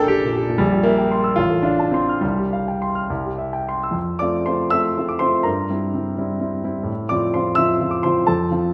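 A polished, up-front grand piano with short sustain opens this 8.7-second passage from a passionate, hopeful romantic character piece for solo piano in F major, moving in a rubato 6/8 at 67-89 BPM in dotted quarters across a range from A1 to G6 through chords such as Gm/Bb, C7/Bb and Csus4 before settling on F at 4.0 seconds for a second section, all set in a reverberant recital hall with a 1.7-second decay.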